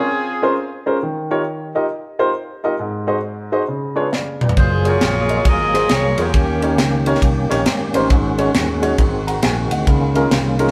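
Uptempo gospel with a swung, uplifting and soulful feel, where a dark, mellow baby grand piano with audible action noise carries the accompaniment throughout while a clear, tight saxophone section with light vibrato plays brief melody phrases; a crisp fusion drum kit with a high-tuned snare and tight kick bursts in with a fill at 4.1 seconds, and at 4.6 seconds a punchy fingered electric bass and a full tonewheel organ with key click and slow rotary speaker join the returning horns, the band playing live in a moderately reverberant stone room.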